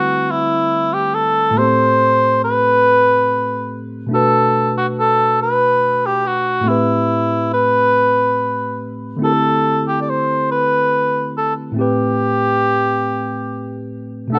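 Yearning and late-night in mood, this short R&B excerpt moves at a slow 47 beats per minute in dotted quarters, a straight 6/8 feel in A dorian, tuned to A4 = 441 Hz. A mellow cor anglais carries the melody in a solo, classical style, its smooth top sitting up front between E4 and D5 for the full 14.4 seconds. Beneath it, a tine electric piano plays accompaniment across a broad span from A2 to F#5, sounding worn, slightly out of tune and clean through a combo amp, also placed up front. The harmony circles through D13sus4, Am7 and Bm7, returning to D13sus4 at 9.2 seconds before settling on Am7 at 11.8 seconds. Light reverb and studio ambience frame a rough home demo mix, giving the whole passage an unpolished quality.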